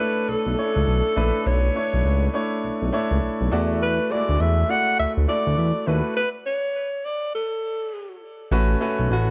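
A breathy alto saxophone and a clear concert grand piano open this bouncy, punchy new jack swing excerpt together, the sax playing a whispered, subtoned jazz-style melody with scooped notes, vibrato and a touch of delay over the piano's intimate, polished accompaniment, where action noise is audible. A smooth, detuned sawtooth-and-square synth bass joins at 0.3 seconds, mellow and up front, as the harmony moves from Bm11 to E9sus4 at a swung 102 BPM, tuned to A4 = 441 Hz. The groove halts for a stop from 6.2 to 8.5 seconds before landing on A69, all in a dark, warm production with light studio reverb.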